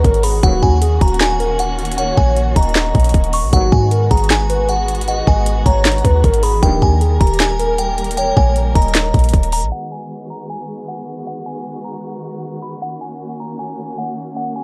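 Opening on a barely audible downlifter beneath a crystalline synth bell melody and a hollow, woody clarinet-like synth lead, this menacing, brooding half-time trap excerpt in G# minor at 155 BPM rides on a hard-clipped, up-front trap drum kit and a boomy, clean 808-style bass, with distant bowed chamber strings holding dark sustained chords and warm, soft-attack brass ensemble stabs punctuating the opening section, all in a dry, gritty sound where the drums stop at 9.6 seconds, the bass and lead at 9.7, and a filter sweep carries the bell and strings to a faint swell at 14.6 seconds.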